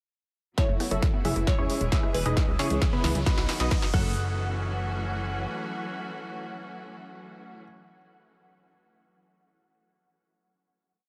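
A euphoric, emotional uplifting trance piece in F# dorian at 134 BPM opens at 0.6 s with a build. A punchy, layered electronic kick sits up front in four-on-the-floor, joined by a tape-warmed analog drum machine playing a fill of rim, closed and open hats, snare and crash, while a funky, wave-folded analog bass gallops in sixteenths under sidechain pumping. Over F#m7, E, C#m7 and Badd9, a full-bodied, detuned supersaw stab carries the repeating riff melody in full chords, its filter sweeping through the build. In the background, a dark, worn baby grand piano with audible action noise doubles that anthem part an octave higher, also filter-swept and pumping. A glassy, crystalline wavetable pluck adds its own repeating riff through chorus and tape echo, and a very quiet unison pluck runs a 3-step arpeggio loop drifting against the bar. A biting, distant symphonic string section holds sustained chords with vibrato, and a background riser marks the transition. 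The drums stop at 4.0 s, and at 4.2 s a final hit arrives, where the supersaw, piano, pluck and strings carry on, the stab and piano trailing digital delay within light reverb.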